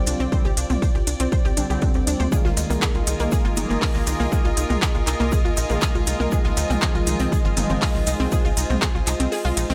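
A heavy, tape-warm electronic kick sits up front in this cinematic, driving melodic techno excerpt, anchoring a layered techno kit of handclaps, smooth hi-hats and toms, with grainy, distant maracas in the background from the start and a very quiet acoustic studio kit of hi-hat, shaker and snare joining at 2.3 s. A tight, punchy sequencer bass and a round, detuned analog pluck playing chorused, delayed arpeggios pump against the beat, while fat, nasal synth brass stabs, an evolving, warbling resonant pad and an earthy chamber string section with light vibrato hang in the background. The harmony moves from Csus2 to Bb7sus4 under light studio reverb, and the kick drops out at 9.3 s.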